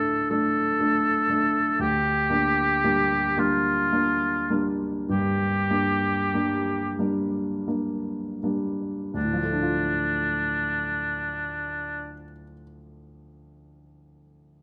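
In a rubato 12/8 that slows through its first 9.1 seconds, this elegiac, melancholic fragment of a romantic classical duo sets a roomy, up-front oboe melody with light vibrato against smooth, vintage-toned grand piano accompaniment, captured by close, detailed microphones in a moderate recital-hall reverb, until the oboe falls silent at 12.1 s and the piano finishes alone at 14.6 s.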